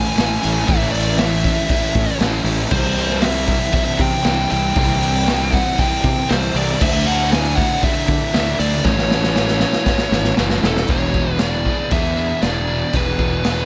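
Shoegaze-tinged dream pop rock at 117 BPM in a straight 4/4, this short, wistful yet blissful passage drifts from Amaj7 through C, Dsus2 and A before settling on E7 for its closing stretch from 10.9 seconds. A distorted fuzz lead guitar sings the melody with slapback echo over two background riffing guitars: a crunchy overdriven one washed in reverse reverb and a hollow-bodied semi-hollow one shimmering with lush chorus. Up front, a growly, bright fuzz bass and a gritty, saturated garage drum kit with dark cymbals and a punchy kick drive the groove, the drums rolling through a fill from 8.8 seconds, all inside a small, lightly reverberant room.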